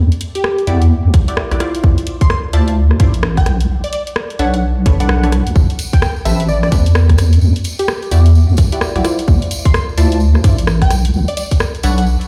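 A skippy two-step garage groove at 129 BPM in 4/4 swings its sixteenths, with an analog drum machine's tape-toned hi-hat and rim click ticking under a tight, layered electronic kick that sits up front. The mood is moody, and a deep, dark wobble bass carries the low end, its rounded sine and triangle tone fattened with chorus and kept loud in the mix. Over the Em9, Dm9, Bm9 and Am9 changes, a full-bodied chord stab built from detuned sawtooth pluck decays in a mellow haze of chorus, phaser and dub echo. A catchy, plucky unison lead rides higher, its detuned sawtooth tone layered with noise, shaped by a moving notch and vibrato, and trailed by dub echo. A bright, jingly tambourine joins from a distance at 5.6 s. The whole track plays through a big sound system in a bare stone room, and it is cut from a longer piece.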